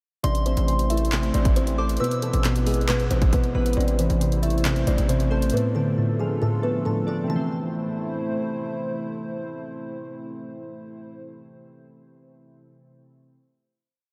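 A bouncy half-time trap beat at 136 BPM drives this dark, brooding hip hop piece in A harmonic minor: an overdriven electronic kit of hard-clipped kick, handclaps and bright sixteenth-note hi-hats with fast rolls sits beside a distorted, saturated 808-style bass holding long sub notes on A1 up front, and both drop out by 5.6 s. Above them a woody, hollow-sounding kalimba loops a mellow melody doubled in octaves with delay, glassy digital keys repeat a pedal-note arpeggio in eighths through chorus and phaser, and a soft FM synth bell adds a sparse, pure counter-melody in the background, while a detuned, wave-folded analog pad enters with a slow attack to hold moody sustained chords. After the hook, the piece settles on a final A minor chord at 7.3 s, with the whole mix soaked in cathedral reverb for a dreamy haze.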